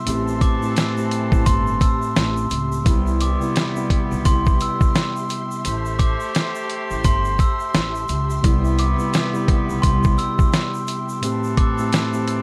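Dry, gritty hardware sound with a bed of vinyl crackle frames this confident boom-bap hip-hop excerpt at 86 BPM with a swung 16th feel, where a compressed, sampler-style kit with thumpy kick and fat snare sits up front beside a mellow tine electric piano moving between Am7 and Cmaj7, a dark, woody pizzicato upright bass on gut strings that drops out at 10.1 s, distant horn stabs with light vibrato and analog delay, lush bowed strings in the background, a grainy shaker, and a bell-like glockenspiel melody, struck with soft plastic mallets, entering at 0.4 s.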